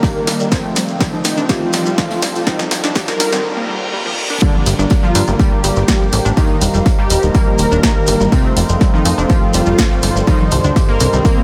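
Soaked in a huge, dreamy reverb, this hypnotic, driving melodic techno excerpt at 123 BPM in G minor opens with a 4.4-second build-up of a drum fill, filter sweeps and a very quiet riser and reverse cymbal over an overdriven, up-front electronic kick, a punchy analog drum machine, a very quiet soft brush drum kit and a grainy shekere, while a smooth detuned supersaw melody, a moody dark analog pad, round analog pluck arpeggios and bold synth brass stabs pump with sidechain above a blurred granular cloud pad, until the drop brings a crystalline glassy wavetable pluck second line, a funky plucky analog bass from 4.7 seconds and, from 6.8 seconds, a tense swarming drone, all moving through Eb, F, Cm and Gm chords.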